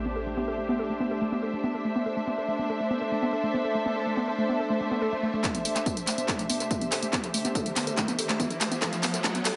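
A wet plate reverb and echo-heavy mix wrap this driving, intense slice of peak-time techno, with the top end rolled off for a hazy, muffled sheen. A dark, lush string section sits up front throughout, its bowed ensemble tone woody and smooth with vibrato, pumping against the sidechain under a sustained A minor chord. Alongside it a warbly, dusty pluck repeats a riff, lo-fi and mellow with chorus, tube saturation and analog delay, while a filter sweep moves across the synth arpeggio. An electronic impact opens the piece, and a swell from 4.8 seconds leads into a build-up where a heavy, layered electronic kick and an up-front techno kit of handclaps, hi-hat and tambourine enter at 5.4 seconds with a drum fill, the kit's hits trailed by analog delay. A riser climbs from 6.5 seconds to the cut-off, keeping the tension high as this fragment of a longer track ends.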